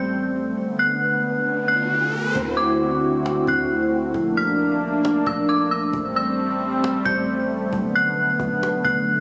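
A dark, detuned synth bell carries the melody high up, its eerie, inharmonic FM tone striking quickly and decaying through chorus, delay and a low-pass filter, sitting up front in the mix. This is atmospheric cloud-rap at 134 BPM in a half-time 4/4 feel, hazy and spacious, cut from a longer piece. Beneath the bell, an analog pad holds sustained chords with a smooth, warbling, vintage character, soft in attack and long in release, while a deep, sine-like 808-style bass sustains low and dark. An electronic riser sweeps in at 1.3 seconds, and at 2.4 seconds a woody, close cajon with faint snares enters as the harmony moves from Am7 and Bm7 to D7, Bbmaj7 and back. The whole track is heard as if captured on a phone in the room, with club reverb, light reverb and digital ambience lending it a roomy glow.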